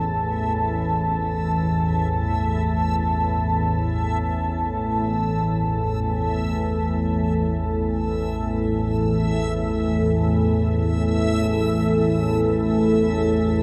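An up-front dark analog pad of detuned sawtooth and sub-octave tones holds moody sustained chords with chorus and shimmer reverb over a calm organ-like sine drone, while a reversed, granular backwards swelling texture fades in on a bright high E5, and a very quiet quartz singing bowl, struck with a wooden striker, rings meditative arpeggios until 8.4 seconds in this cavernous, desolate dark ambient drone cut from a longer piece, played in free time and steeped in a huge, wet reverb.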